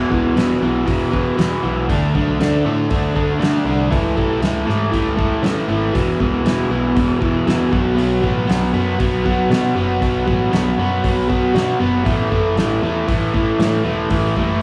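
Classic rock at 118 BPM in a straight 4/4, this swaggering, sunny excerpt is cut from a longer piece and keeps to a single section for about 14.6 seconds. A crunchy, overdriven electric guitar carries the riff up front, double-tracked and picked, with a touch of spring reverb on its tone. Beneath it, a picked electric bass sounds both direct and amped with a warm body. The cloth-damped, thuddy acoustic drum kit brings a fat snare, a tight kick and hi-hat, with a warm, rolled-off top and a small-room character. The chords move from E5 through D5 and A, back to E5, then to B5 and finally A5 at 12.1 seconds. The band plays live in one room, with a moderate large studio reverb and a layer of vinyl crackle giving the whole recording a vintage sheen.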